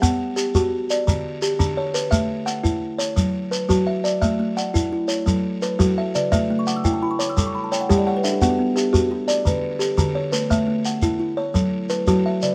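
Lightly reverberant, this hypnotic, rippling excerpt of southern African traditional music in 12/8 opens with an up-front, buzzing, woody kalimba spinning band-limited, vintage-toned arpeggios over a grainy, mellow shekere, before a second, dark and hollow-ringing kalimba joins at 4.4 s to thicken the interlocking mbira-style cycle and plays a fill from 6.4 to 8.4 s, all over a looping progression that returns to Bm.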